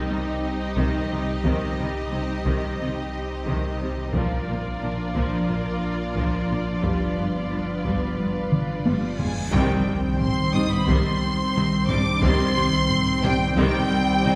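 A wet, distant scoring-stage sound frames this tense, relentless cinematic cue, a hybrid of orchestra and electronics in C minor at 89 BPM in a straight 4/4, cut from a longer piece. From the opening, an airy, breathy pad with chorus holds sustained chords over a deep, clean sine sub bass, while a smooth violin section with light vibrato carries a second line above lush violas and cellos in the background. A taiko ensemble struck with hard sticks enters at 0.8 seconds, close and dry but set back in the mix, driving a build-up over C minor, B-flat and G7 that ends in a drum fill. A reverse cymbal rises into a huge, dark impact at 9.5 seconds, where the band accents the return to C minor and the second section begins. Just before, at 9.2 seconds, a focused, vibrato-rich violin section takes up the melody high above mellow French horns holding chords in the background; bright trombones join them at 9.5 seconds, and a very quiet double bass section anchors the low end on C2.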